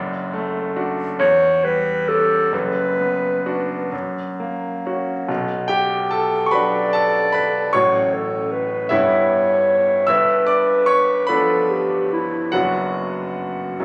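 Solemn and elegiac, this fragment of a longer romantic classical piece pairs clarinet with grand piano in B minor, moving in a slow, rubato 6/8 at roughly 43-53 BPM counted in dotted quarters. The concert grand opens alone and carries the accompaniment, its brilliant, polished tone sitting up front with deep bass and long sustain. At 1.2 seconds the clarinet enters with the solo melody, its mellow voice staying in a compact middle register. A second section begins at 5.3 seconds, where the harmony settles on B minor and passes through F# minor, E minor and a G7 before returning to B minor over F#. The duo sounds as though it was captured on a phone in a recital hall, with a moderate, lingering reverb around the instruments.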